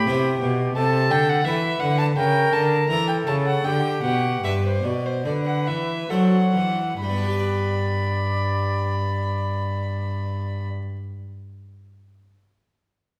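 A straight 4/4 pulse moves between 65 and 88 BPM and gradually slows over the first 7.0 seconds of this dance-like, flowing baroque-style sonata movement in G major, cut from a longer piece and tuned to A4 = 442 Hz. A single violin carries the melody up front with a close, reedy gut-string tone in period style. A silver concert flute plays a second line beneath it, its straight tone bright and airy with a soft attack. One bowed cello holds the bass with a rich period-style sound, while a French-style harpsichord fills in a full, plucked accompaniment from two sets of strings, ringing on to 11.0 seconds after the other parts stop at 10.7. The harmony passes from E minor through A minor and A7b9 to G and D7, then settles on G as a new section opens at 7.0 seconds, heard in a wet recital-hall reverb that suggests a church or concert hall.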